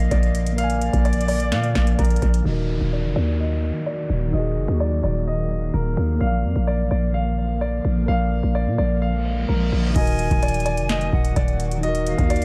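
Dark, menacing trap-flavored hip hop with a half-time feel, this short cut from a longer piece sits in an echo-heavy digital ambience. A warm concert grand piano carries the melody throughout, filtered and trailed by analog delay, over a mellow tine electric piano heard as if through its built-in speakers and a cloudy, detuned granular pad that blurs and evolves in the background. A growling, buzzy 808-style bass stays up front the whole time, while a booming, overdriven analog drum machine with a deep kick, crisp snare, metallic hats and crash plays only in the opening and closing stretches, up to 2.4 seconds and again from 10.0 seconds. A breathy flute with vibrato and rolled-off highs adds a second line in those same stretches. In the middle, the drums drop away as a filter sweep and an electronic downlifter join the mix, and a reverse cymbal rises into the return of the beat at 10.0 seconds.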